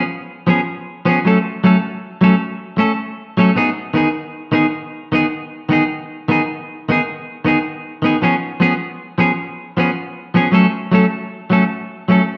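A bright, twangy clean electric guitar opens this carefree, sunny highlife excerpt, playing up front from 0.0 to 12.2 seconds in a straight 12/8 at 103 BPM. Its picked, compressed tone carries a touch of spring reverb, set in a generous studio ambience with the feel of a live room. The harmony moves from C#7/E# through F#m and G#m/D#, returning to C#7/E# at 8.2 seconds before settling on F#m.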